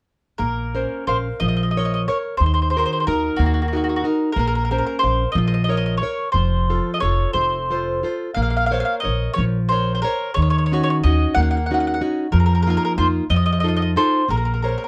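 At 0.4 s a mandolin, nylon-string guitar and upright bass begin together in a romantic, passionate Italian serenade, moving in a rubato 6/8 at about 60 BPM in Bb harmonic minor. The mandolin carries the melody with a mellow, round, picked tone from its doubled strings, sitting up front between Gb4 and Gb5. Alongside it, the classical nylon-string guitar is fingerpicked with a bright, full-bodied sound, spanning C3 to F5 in its accompaniment. The upright bass, played pizzicato on steel strings, adds a woody, dark, thumpy low end from F1 to F2 and stops at 14.7 s, just before the other two finish at 14.9 s. The harmony circles from Bbmadd9 through Ebm and F, then leans on Ebm7, F7sus4 and F7 before settling back on Bbmadd9, all within light reverb in this folk excerpt cut from a longer piece.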